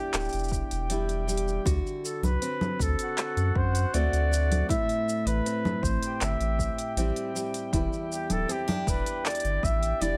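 A distant, roomy flugelhorn opens this intimate folktronica piece with a solo melody in a classical style, its line trailing delay, while a reedy, mellow accordion holds full chords and a fingerpicked dreadnought acoustic guitar with old strings spins woody arpeggios, also touched by delay. Within the first 0.1 seconds a round, sine-like sub bass arrives up front, deep and sustained, alongside an organic electronic drum kit of congas, handclaps, shaker and smooth hi-hat, its produced sound overdriven and set in a small room. An overdriven electronic kick drum adds a deep pulse from 0.5 seconds, sharing that small-room ambience. The harmony moves from Em7 to D7, then Am7, and back to Em7, giving the delicate mood a gentle, unhurried sway. The mix carries a light reverb, and the passage is cut from a longer piece, ending at 10.2 seconds.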